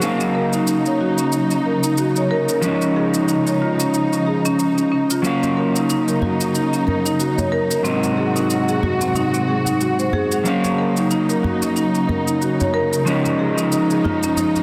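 From the opening moment, a muted string section holds dark, veiled chords under a marimba played with medium mallets, whose smooth arpeggios sit behind a low-pass filter and digital delay. An electric guitar at the edge of break-up adds fingered accompaniment, its slightly gritty tone trailing through its own digital delay, while a layered, tape-tinged electronic shaker ticks softly in studio reverb. This is meditative organic downtempo at 92 BPM in 4/4, with a gentle 16th-note swing and a home in Eb dorian. The harmony circles through Ebm7, Dbadd9 and Ab7, keeping the mood calm and unhurried. At 5.4 seconds a deep, warm djembe joins, played with soft hands in a live room. The bowed strings carry vibrato and sit up front, and a huge ambient reverb surrounds the ensemble in a dense, heavily limited modern master, in a fragment cut from a longer piece.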